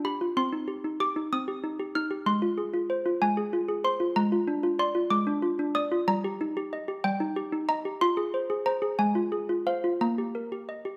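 Classical lullaby for solo malleted handbells, innocent and dreamy, moving at 62 BPM in a straight 6/8 in E-flat major across this 11-second fragment of a longer piece. The bells sit up front with a damped, short, boxy and warm tone, their hard clappers still giving a bell-like character, spanning G3 to F6. Close, detailed microphones catch them in a moderate recital-hall reverb as the harmony passes from C minor through F minor and B-flat seventh to settle on E-flat over B-flat.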